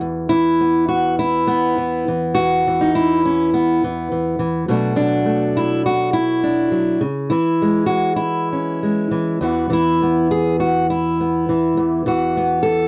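Warm and pastoral, this short folk excerpt features a solo fingerpicked steel-string acoustic guitar played with a loose, rubato feel, moving from Esus2 through Bm7 and C#m before settling back on Esus2 around 9.4 seconds. The guitar sits up front with a woody, old-strings character, heard in a dry, close 1970s-style studio sound touched by light reverb.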